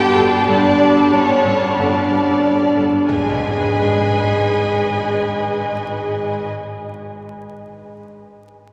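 Cinematic suspense film score at 92 BPM in G# phrygian, eerie and tense, this short cut from a longer piece opens on a Gadd9 chord, with a French horn section holding up-front, tight sustained chords over bowed string sections, where a distant violin melody, a focused second violin line, smooth viola accompaniment, and rich cello and double bass sections underpin the bass. In the first three seconds a background cello riff and a very quiet felt-muted upright piano with boxy, short-sustain tone and audible action noise add texture, while high, lush violins carry that texture on until about 5.3 seconds. A very quiet electronic impact lands at 3.1 seconds as the harmony moves to G#m. A cavernous cathedral reverb and vinyl crackle give the whole a haunted, aged air.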